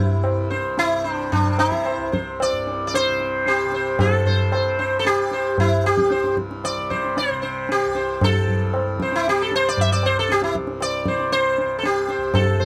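Hindustani classical music in raga bhupali, serene and meditative, this brief cut from a longer piece gathers pace as it goes, with a bright, plectrum-plucked sitar carrying the melody up front, its buzzing tone haloed by sympathetic strings. Beneath it a softly plucked tanpura holds a warm, shimmering drone in a low register, while a low-tuned tabla with short ring, compressed and saturated, joins at 0.2 seconds. Close, detailed microphones and light reverb keep the sound intimate, and the music moves into a new section at 4.0 seconds.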